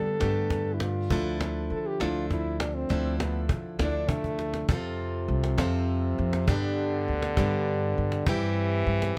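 Close, dry and detailed, this intimate, melancholic fragment of acoustic folk in a straight 6/8 sets a clear, classical-style French horn up front, taking a solo over the first 4.7 seconds, alongside a bright, picked plugged-in steel-string guitar with audible finger squeak, a dark, thumpy pizzicato upright bass on gut strings, and a woody cajon struck with hard hands and faint snares that plays a fill from 4.2 to 4.7 seconds as the harmony shifts from Gadd9 and Dmadd9 toward F, G and C/G.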